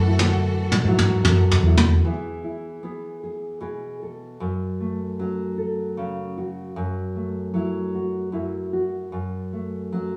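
Front and center, a dark, full-bodied nylon-string guitar, thumb-plucked with a deep classical tone, carries the accompaniment through this melancholic, heartbroken acoustic folk-pop ballad in F# minor. It moves at 76 BPM in a straight 3/4 and runs the full length of the excerpt. In the opening moments, a very quiet, boxy picked archtop guitar touches a brief melody note. A lush, bowed string section with focused vibrato holds sustained chords alongside a growly, round fretless electric bass with an amped, hollow-body character. Brushed toms, mid-forward and up front with a rolled-off top, play a fill from 0.2 s until everything but the nylon guitar stops at 2.0 s. The harmony drifts from F#m7 through E and back to F# minor, and the whole band sits in a moderate studio reverb as though playing together in one room.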